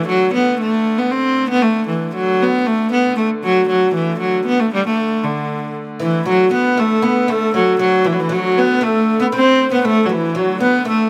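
Festive and ancient, this medieval dance in D mixolydian moves at 117 BPM in a straight 2/4, with a clear, reedy viola da gamba carrying the melody up front with light vibrato and a slapback echo over a rich, nasal hurdy-gurdy drone, joined at 6.0 seconds by a breathy, hollow bass recorder and a woody, plectrum-plucked oud on second lines, all in a dry outdoor sound in this short cut from a longer piece.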